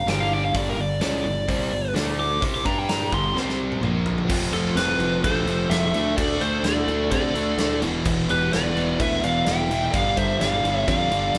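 Recorded live in one big room with a moderate studio reverb, this swaggering, anthemic hard rock excerpt opens on an up-front, biting lead guitar solo colored by overdrive and digital delay, backed by a hollow-bodied semi-hollow guitar and a dark, sludgy distorted guitar riffing in the background, a growly fingered electric bass and a big acoustic rock kit with bright cymbals and a punchy kick, before a drum fill at 3.4 seconds ushers in a very quiet, double-tracked, compressed electric guitar riff at 4.3 seconds and a smooth, shadowy second lead line tucked in the background at 4.5 seconds.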